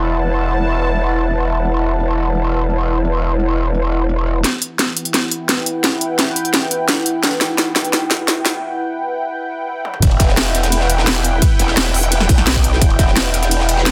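Dark technical drum and bass with a mechanical, futuristic mood, cut from a longer piece. It opens on an evolving, full-bodied sawtooth pad with chorus and sidechain pumping, a growling, detuned bass with overdrive, and an up-front electronic kit of cracking snare, crisp low-pass-filtered hats and toms. The bass drops out at 4.4 seconds for a build-up of filter sweeps over the pad, drum fills and a short break. Then at 10.0 seconds the drop brings back the bass along with a punchy, tape-warm electronic kick and a gritty, compressed breakbeat kit with a high-tuned snare in the background, all set in light reverb with a dense, heavily limited master.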